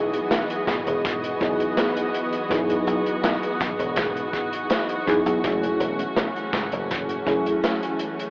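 A faded, nostalgic vaporwave fragment opens with a round, chorused FM electric piano with analog delay and veiled, con sordino bowed strings carrying 12-bit sampler grit, over a punchy, foam-muted thumbed slap bass with tube saturation; a crunchy, gritty breakbeat kit of hi-hat and snare joins at 0.1 seconds and a tight kick at 0.7 seconds, the harmony moves from Emaj9 to F#m9 at 5.4 seconds, and the whole mix sits in huge ambient reverb with the warbly pitch drift and AM radio tone of a worn cassette.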